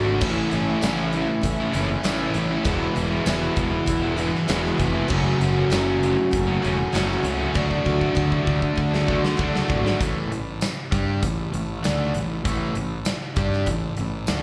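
Driving and sunny, this classic rock excerpt at 98 BPM moves through A, E, F#m and D. A round, fuzzy, up-front fingered bass sits under a cranked stack guitar with a bright, overdriven edge, a sludgy distorted guitar with a warm tone, and a boxy parlour steel-string acoustic with slapback echo. A huge arena drum kit with punchy kick and bright cymbals comes in at 0.2 seconds and plays a fill from 7.6 seconds, and at 10.0 seconds the acoustic and sludgy guitars drop out, leaving bass, stack guitar and drums on an A5 chord, all heard through a club PA with small-room reverb.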